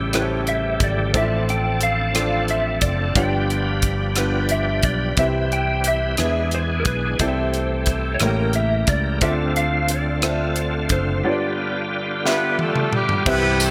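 A bright digital production with light small-room reverb frames this uplifting, soulful slow gospel in 6/8, where a woody upright piano with analog chorus and a shouting, lightly overdriven tonewheel organ on fast rotary speaker carry the chords over a dark, round fingered bass and a crisp, polished drum kit with punchy kick and high-tuned snare, while a compressed, slightly broken-up electric slide guitar with ensemble chorus and delay sings the melody; a drum fill arrives at 12.2 seconds, a punchy, vintage horn section enters at 12.3 seconds, and a jingly tambourine joins at 13.6 seconds.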